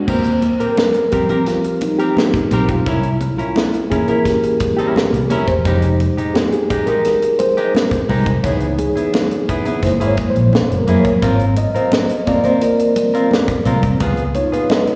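Smooth and warm, this lush 1970s-style soul excerpt moves at 86 BPM in a straight 4/4 in Eb major, with a reedy, mellow electric piano taking a solo from 0.1 to 15.0 seconds, its fast tremolo, plate reverb and slapback echo coming through built-in speakers up front over chords such as Eb6, C7b9, Fm9 and Gb9. A bright, clean semi-hollow electric guitar picks a riff with slapback echo, while a round, foam-muted fingered bass sits dark and forward. A funk drum kit with dark cymbals, a high-tuned snare and a tight kick plays alongside damped, hard-handed congas tucked in the background, all heard as a live gig through the venue's PA in a moderate club reverb.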